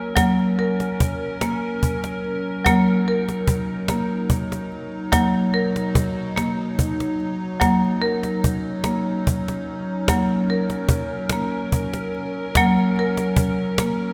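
Gentle and calm, this short excerpt of meditative world music drifts at 73 BPM in a straight 3/4, moving from F# to B at 5.1 seconds and back to F# at 10.1 seconds. A bright, woody marimba with medium hard mallets spins airy arpeggios up front, its notes trailing into shimmer reverb. Alongside it an evolving, warbling wavetable pad holds sustained chords with a vintage sine tone, chorus and shimmer, while a snappy, close and dry cajon with snares keeps time, all set in a wet church reverb.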